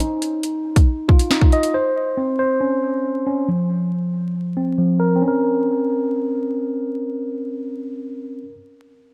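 A half-time drill groove in 4/4 opens this tense, cold hip hop fragment, cut from a longer piece. The electronic drum kit sits up front with a hard-clipped kick, a sharp snare and metallic hi-hats, but it plays only until 1.7 s. The mellow tine electric piano carries on through 8.5 s with arpeggios. Its clean, direct tone runs through a low-pass filter and tape echo, and a filter sweep shapes it through the first 5.2 s. The harmony moves through Ebsus2 and Fsus4 before settling on Bbmadd9 at 5.2 s. A moderate spring reverb and vinyl crackle give the production a dark, warm character.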